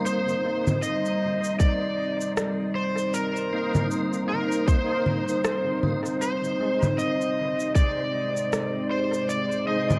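A deep, warbling detuned pad and a lightly overdriven tonewheel organ with slow rotary speaker and dub echo open this spacious ambient dub excerpt in C minor at 78 BPM with a swung 16th feel. They are joined almost at once by a bright, overdriven slide guitar melody and by dub-echoed electronic shaker, congas and rim click, while a tight, up-front electronic kick plays from 1.6 to 7.9 seconds as the harmony moves from Cm7 to Ab/C at 6.2 seconds, all set in a moderate scoring-stage reverb.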